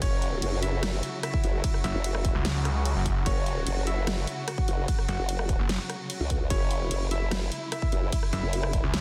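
Heavy wobble dubstep at 148 BPM in a half-time 4/4 feel, chaotic and menacing, cut from a longer piece and centred on an F#5 chord. A chorused, overdriven formant-sweep wobble bass sits up front over a punchy layered electronic kick, with a growling, distorted saw bass snarling in from 1.8 to 5.8 seconds and again at 8.3 seconds, while a drum kit of huge snare, hi-hat, rim click and crash cymbal drives underneath. Softer in the mix, a brilliant grand piano with audible action noise carries the melody through tape echo, and a smooth-topped string section holds bowed chords with vibrato and portamento, pumping under sidechain and a low-pass filter, all in a dry, dense, heavily limited master.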